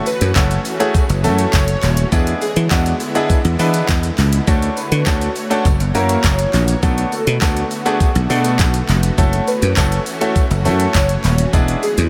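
Energetic and confident, this dance-pop excerpt moves at 102 BPM in a straight 4/4, cut from a longer piece and built on two passes of the same drop-styled section, with chords moving from F#m7 through E7, Dmaj7 and F#7 to Bm7, then back through F#m7 and E7. Up front, a dry, growly thumbed slap bass gives a punchy, foam-muted low end, while a smooth R&B drum kit with a knocking kick, handclaps, shaker and warm hi-hat sits close and present, its electronic sound re-recorded in a small room. A brilliant baby grand piano plays the accompaniment with short sustain and audible action noise, giving an intimate, polished edge. Behind these, a lush, detuned supersaw pad holds slow-attack chords under subtle chorus, and an airy, dreamy lead sings a mellow sine-based melody with vibrato, chorus and delay. A very quiet, jingly tambourine adds close, acoustic sparkle, and the piano, pad, lead and bass all pump against the kick under a huge ambient reverb that soaks the mix in a dreamy haze.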